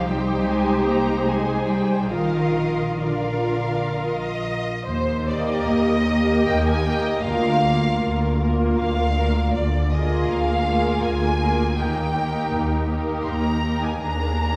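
In a flexible, rubato 3/4 that drifts between 60 and 82 BPM, this excerpt from a slow romantic movement for string orchestra unfolds in Eb major with a warm, lyrical mood. Two muted violin sections play throughout its 14.6 seconds. One sings the melody between C5 and C6, while the other traces a second line beneath it, their con sordino tone veiled and lush, with vibrato and soft attacks. Muted violas fill in the accompaniment with a smooth top, and muted cellos and double basses anchor the bass in dark, bowed ensemble sound. The harmony moves from Cm to Bb before arriving on Eb at 4.9 s, where a new section begins and the progression passes through Bb/D and back to Eb. A wet scoring-stage reverb with a 1.9-second decay places the orchestra further back in the room.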